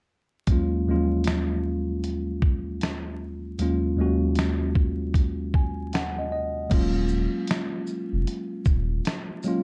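A swung sixteenth-note groove in four sets the pace of this nostalgic, hazy lo-fi hip hop snippet, cut from a longer piece. From 0.5 seconds a dusty, sampler-style kit carries the beat with a thumpy kick, fat snare, hi-hat, shaker, finger snaps and a crash cymbal, all compressed and gritty with vintage 12-bit crunch and the ambience of a large room. Alongside it, a worn, slightly out-of-tune tine electric piano sits up front with a clean, direct tone, spreading its chords across a broad range and playing a fill at 5.2 seconds. At 6.7 seconds the second section begins as a deep, full sub bass with an added octave enters, its mellow, sustained sine-and-triangle tone arriving with a fast attack. A small room reverb and a bed of vinyl crackle wrap the whole track in a soft, faded haze.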